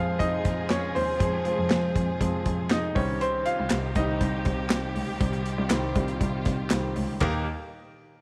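Polished and lightly reverberant, this short excerpt of piano-driven pop moves at 120 BPM with an anthemic, warm mood, its clear, up-front concert grand carrying a solo with deep bass over chords of Fm, then Cm at 3.0 seconds, arriving on Eb at 7.2 seconds. A lush, bowed string section holds sustained chords with vibrato and portamento, while an expressive solo cello supplies the bass line with a soft attack. A modern acoustic drum kit, dark and rolled-off with a tight kick and medium-tuned snare, keeps a straight 4/4 pulse, joined at 3.7 seconds by hollow, close group handclaps sitting in the background.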